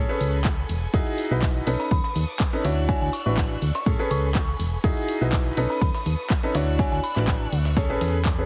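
A straight 4/4 pulse drives this feel-good, euphoric piano house excerpt: a punchy, overdriven electronic kick sits up front, layered with an overdriven house kit of handclaps, bright hats and ride, and a very quiet, gritty, pitched-up breakbeat kit of hi-hat, ride and snare. A clear, woody upright piano riff, roughened by vintage 12-bit sampler grit and dub echo, rides over a round, dark FM bass, while a lush, bowed violin section holds sustained chords in the background, with the piano, bass and strings all pumping from sidechain compression. From 1.8 to 7.5 seconds a glassy, crystalline synth bell melody with chorus and dub echo floats on top, and the whole mix carries a heavily compressed, radio-like sheen.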